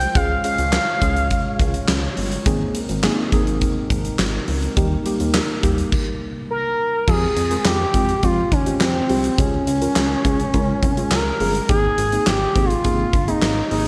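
A straight 4/4 pulse at 104 BPM drives this melancholic, cool synth-pop excerpt in F minor, where a huge arena drum kit sits up front with a punchy kick, fat gated-reverb snare, handclaps, hi-hat and bright crash cymbals, over a glossy, dark chorused synth bass. Muted, felt-like synth keys with chorus and phaser add soft, intimate accompaniment. A faint, ethereal glass harmonica holds glassy sustained chords in the background until 5.9 s, where the arrangement reaches a stop. The smooth, expressive sawtooth lead carries the melody with vibrato and chorus, falling silent at 2.1 s and returning at 6.5 s for a second section that moves from Fmadd9 through Db to Abadd9, all set in a lush hall reverb with bright 1980s-style digital sheen.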